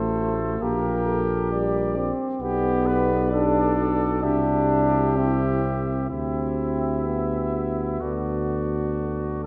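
A mellow bass trombone sits up front with a soft attack, anchoring this stately, triumphant brass quintet passage from its low register. Above it, the lead trumpet carries the melody, while a second trumpet with a warm tone shapes the line beneath it. A French horn with a smooth top and a tenor trombone fill in the accompaniment, the horn placed in the background, and both the lead trumpet and the tenor trombone sing with a light vibrato. The playing is classical in style and unfolds with a flexible rubato feel, moving through a diminished opening toward G, C and a closing D chord. A concert hall reverb with a 1.9-second tail gives the dark production a spacious, resonant glow in this brief fragment of a longer piece.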